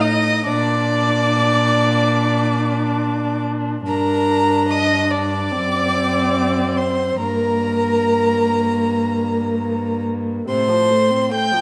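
A wet recital-hall reverb surrounds this tender, lyrical slow romantic movement for string quartet in Bb major at 72 BPM with a rubato feel: a warm, airy first violin sings the melody with light vibrato and a soft attack, a dark, woody second violin carries a second line, a nasal viola with a smooth top supplies the accompaniment, and a pure, floating cello holds the bass up front until 11.2 s, all bowed sul tasto over chords moving from Bb through Gm and D7/F# to F/A in this brief cut from a longer piece.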